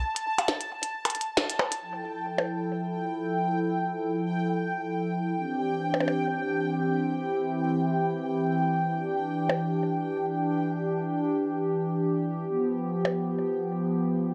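Wistful and intricate, this IDM excerpt at 135 BPM in F lydian, with a lightly swung sixteenth feel, sets a resonant, bubbling sawtooth texture with random filter steps and chorus running throughout against a glitchy electronic kit of tiny snare, clicky hats and percussion blips in short bursts through analog delay, while a hollow, flute-like pad with a soft attack enters at 1.8 s to sustain Fmaj7, D9sus4, Em7 and G7 chords, the whole captured with a dry, gritty hardware sound and light reverb.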